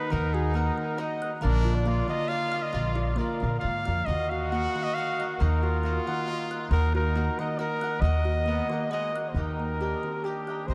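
A lilting 3/4 at 137 BPM, lightly swung and pushed about with rubato, carries this festive, proud mariachi fragment in Eb harmonic minor, cut from a longer piece. A mellow lead trumpet with light vibrato and a touch of delay sings the classical-style melody up front over a lower second trumpet, while a crisp, bright picked cavaquinho sits in the background, a ringing, hollow-boxed kalimba spins thumbnail-plucked arpeggios, and a thumpy, woody pizzicato upright bass joins at 0.1 s prominently in the mix. Moving from Ebm to Bb and back, the harmony brightens to Eb major for a short closing section at 9.3 s, and the whole dreamy mix is soaked in huge ambient reverb.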